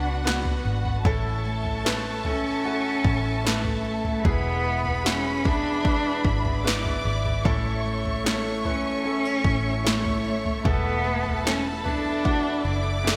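This pop ballad excerpt moves at 75 BPM in a straight 4/4 in A major, carrying a hopeful, emotional mood through a single section that travels from Bm to A, E, back to A and onto a suspended Esus4. A dark, woody cello sings the bowed melody up front with vibrato, while a lush symphonic violin section adds a focused second line above it, touched by digital delay. A clear grand piano with audible action noise plays the accompaniment through a lush chorus, joined in the background by a full-bodied jumbo acoustic guitar picking arpeggios with subtle chorus and a soft, sul tasto studio string section holding sustained chords. Underneath, a vintage foam-muted fingered electric bass gives a round, amped low end. Entering at 0.3 seconds, a layered, overdriven electronic drum kit with a deep kick, punchy snare and toms sits up front with gated reverb, set within light small-room ambience and a bright 1980s-style digital production.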